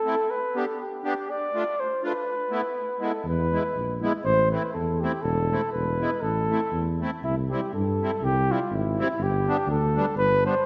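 Bathed in a moderate concert-hall reverb, this festive, bouncy alpine dance-band fragment in 2/4 at 121 BPM, swung and loosely rubato, moves from A minor to C major at 7.2 s as a dark, smooth-topped flugelhorn with light vibrato carries the melody up front over a reedy, sweet accordion with light tremolo tuning, joined at 3.2 s by a mellow tuba bass in classical style.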